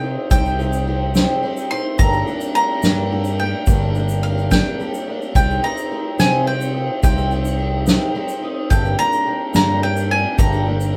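A roomy live-band sound with moderate studio ambience carries this stirring, bittersweet indie folk excerpt in C minor at 71 BPM in 6/8, where a bright, double-strung bowl-back mandolin sings the melody up front over a dark, woody, shimmering twelve-string acoustic guitar, a round, punchy fingered electric bass, a soft-mallet drum kit with dark cymbals and a punchy kick, very quiet mellow brass holding sustained chords, and a grainy egg shaker in the background, all moving between Cm and Gm in an arrangement that builds.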